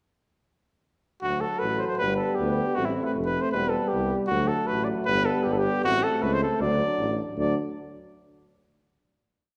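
A short, festive Balkan brass band piece in a wild spirit opens at 1.2 seconds with all four players entering together in a brisk two-beat metre. Up front, a mellow trumpet with light vibrato carries a motif-based melody built from balanced, period-like phrases in a classical style. Two clear euphoniums hold lines of the group's chords beneath it, one soft-attacked and set back in the background, the other punchier with fuller vibrato. A warm tuba, distant and roomy, grounds the harmony with root-and-fifth bass on the main beats. The ensemble plays in a reverberant church or concert hall, and the piece ends on a final chord from 7.4 seconds.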